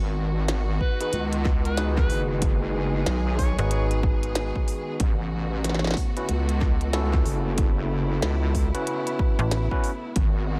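A funky, playful glitch hop fragment at 93 BPM with swung sixteenths opens on a warm, bowed string section holding sustained chords under sidechain pumping and a heavy, detuned wobble bass with chorus and overdrive, soon joined by a glitchy kit of tiny snare and clicky hats, a punchy up-front electronic kick, a brief amplified harmonica solo full of scooped notes and tongue slaps trailing dub echo, and gritty, barky stabs from an overdriven tine electric piano with dub echo, while a snappy, metallic slap-like FM bass pops in at 3.6 s and the harmony moves from G#m7 to A69 at 5.0 s in a dry mix.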